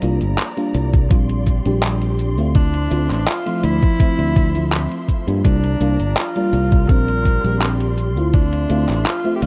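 Dark, cassette-worn and nearly dry, this hazy, melancholic vaporwave excerpt in D minor moves at 83 BPM, with a dreamy, chorused FM electric piano and soft pad, a distant, woody string section bowing sustained chords in the background, a growly, punchy fingered bass up front, an overdriven, detuned 8-bit drum machine of cabasa, handclaps and hi-hat, a thumpy overdriven kick entering at 0.9 seconds, and a clear, roomy alto saxophone melody with 12-bit sampler grit and tape echo arriving at 2.6 seconds over chords cycling from C9sus4 through Bb69 to Dm9.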